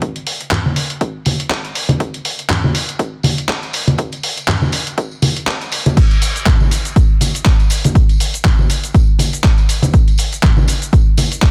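A swung sixteenth-note groove at 121 BPM in 4/4 drives this nostalgic, sensual house excerpt, anchored by a punchy, layered electronic kick drum sitting up front. Around it, a gritty, compressed soul sampler-style kit adds hi-hat, shaker, handclaps and crash cymbal with sidechain pumping, while bright, vintage, band-limited tambourine and softly played congas pump in the same way through a low-pass filter. The first 6.0 seconds build up under a filter sweep on the drums before the drop lands at 6.0, all in a dry, dense and heavily limited modern master.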